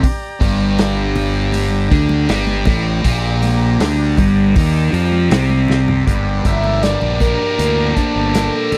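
Trippy and mysterious, this short psychedelic rock cut in G minor moves at a straight 79 BPM, with a dark, double-tracked fuzz guitar riff and a round, overdriven fingered bass sitting up front over a punchy vintage drum kit, a quiet buzzy combo organ holding sustained chords with light vibrato, and faint, bright congas joining at 1.2 s; after a drum fill at 5.1 s, a gritty, screaming synth lead with phaser, slapback echo and vibrato enters at 6.5 s, all captured in a dry, close 1970s-style studio sound.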